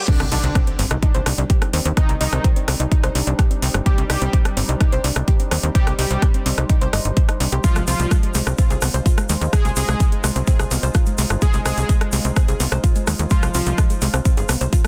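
A straight 4/4 pulse at 127 BPM drives this dark melodic techno drop in C minor, with a punchy, up-front electronic kick and a house kit of metallic hi-hats, crash and rim click with a softly clipped snare, a tight, nasal, sidechain-pumped sequencer bass, a soft round pluck playing chorused, tape-echoed arpeggios, a deep, moody pad with chorus and reverb holding chords that move from Cmadd9 to Ab6 at 7.6 s, a thick, warbling unison lead with digital delay in the background over a very quiet, smooth supersaw second line, a reverse cymbal and impact opening the cut, and a grainy egg shaker joining at 7.6 s, all set in digital ambience with a dense, heavily limited modern master.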